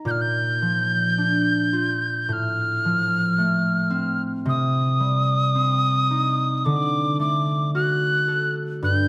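Set in a moderate concert hall reverb, this haunting, longing Celtic slow air excerpt moves in a free, rubato 4/4. A bright, ringing concert harp, fingerpicked and up front, carries the accompaniment through chords of Bb, F/A, Cm and D. An airy metal tin whistle joins at 0.1 seconds with the melody, its tongued notes carrying chiff and vibrato, with a slapback echo trailing behind.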